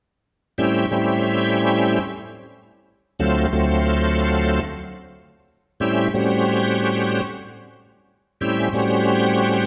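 A bright tonewheel organ opens at 0.6 seconds, sounding full and shouting as it sits up front in this short blues cut from a longer piece. The mood is rollicking and soulful, and the playing moves in free time rather than to a steady beat. Light overdrive gives the organ a gritty edge, and chorus vibrato and a slow rotary speaker set its tone gently churning. In an accompanying role, it moves from A7#9 to D7#9 at 3.2 seconds and back to A7#9 at 5.8 seconds, spanning D2 to F#4. The performance was captured live in one room, and a stone room reverb with a 1.5-second decay surrounds the sound with lingering, hard-surfaced ambience.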